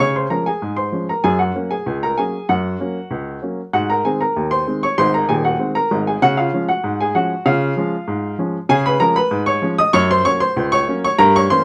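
Ragtime piano in D-flat major at 96 BPM in 2/4 with a straight feel, cheerful and playful in mood. A single upright piano carries the whole 11.6-second clip, sounding woody with a short sustain and sitting up front in the mix, its range spanning Eb1 to Eb6. The harmony moves from Db to Gb, then through Ab7 back to Db, before Db7 leads on to Gb near the end. Close, detailed microphones capture the instrument with light reverb. It is cut from a longer piece, tuned slightly low at A4 = 438 Hz.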